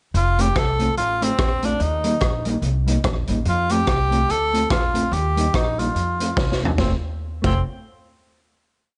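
A bright, close-miked tenor saxophone leads this short, upbeat ska piece, singing pop-style song phrases built on catchy motifs with a touch of vibrato, sitting up front from the first moments. Beneath it, a raw garage drum kit plays a cheerful ska beat with a side-stick backbeat, its punchy kick and medium-tuned snare sounding gritty and saturated in a small room, with a rolled-off top and a slapback echo. The upright bass walks along in pizzicato, its steel strings giving a woody, dark tone. A mellow, clean electric guitar chops on the off-beats with fingered chords, bathed in spring reverb and slapback echo. The harmony swings between F and Eb, and a drum fill at 6.4 seconds leads into a final chord at 6.8 seconds that closes the whole piece under a light reverb.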